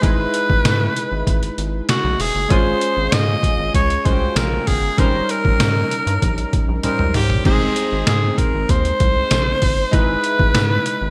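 A raspy, vibrato-laden alto saxophone carries the melody up front with a touch of delay, over chorused, detuned retro synth keys and a rubbery, bouncy square-wave bass in this glossy, nostalgic 1980s-style pop excerpt at 97 BPM in Ab major. Underneath, a pitched-down, gritty trip hop sampler-style kit with a thumpy kick, medium-tuned snare, hi-hat, tambourine and crash sits compressed and bathed in gated reverb, with a drum fill at 6.8 s. Lush seventh chords over Ab and G# bass notes shimmer in bright digital production and a moderate plate reverb.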